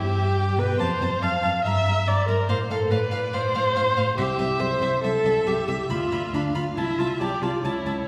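Quick classical-period string quartet movement in a stormy, restless mood, cut from a longer piece and played with rubato, where a distant first violin sings the melody with smooth vibrato above a close second violin line, while a dark, woody viola accompaniment and a focused cello bass sit up front, all bowed in a reverberant recital hall heard from further back in the room.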